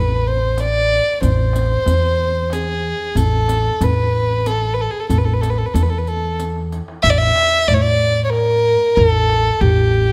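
A straight three-beat pulse carries this Arabic maqam ensemble piece, cut from a longer performance and full of longing and soul. A single bowed violin takes the melody up front, its dark, woody and somewhat boxy tone colored by light vibrato. Beneath it, a pizzicato upright bass with steel strings gives a growly, warm foundation. The darbuka sits in the background with a deep, large clay-shell sound and hard-handed strokes that seem distant, as if in a large room, while the riq adds bright, close jingles further back still. A drum fill at 6.4 s leads into a new section at 7.0 s. Light reverb and close, detailed miking keep the ensemble intimate.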